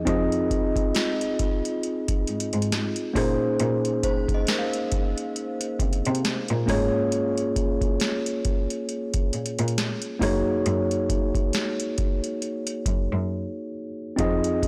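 A mellow, up-front tine electric piano, a rich, distant bowed cello with vibrato and a background FM synth chime, ringing and inharmonic through ensemble chorus, phaser and tape echo until 7.6 seconds, open this dreamy, smooth contemporary R&B excerpt at 68 BPM with a swung 16th feel, joined by a booming, overdriven analog drum machine with deep kick, crisp snare, metallic hats and rim clicks, as the harmony moves through Fm7, Bbm11, Db6/Ab and Gb69 toward a break at 13.3 seconds, all in a blown-out, overdriven recording with light reverb.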